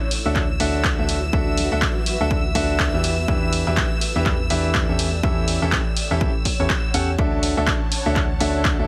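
Heavily compressed and radio-like with light small-room reverb, this euphoric, joyful piano house cut at 123 BPM in D major swings its 16ths and moves through Dadd9, Em7 and A7/E before returning to Dadd9. A clear, up-front grand piano riff with delay enters at 0.3 seconds alongside a hollow, organ-like FM bass. A punchy, dry electronic kick arrives at 0.4 seconds, and a drum machine supplies handclaps and hi-hat. Rich, floating bowed chamber strings hold sustained chords while a blurred, detuned granular pad adds texture in the background, with the strings, pad, piano and bass all pumping under sidechain compression.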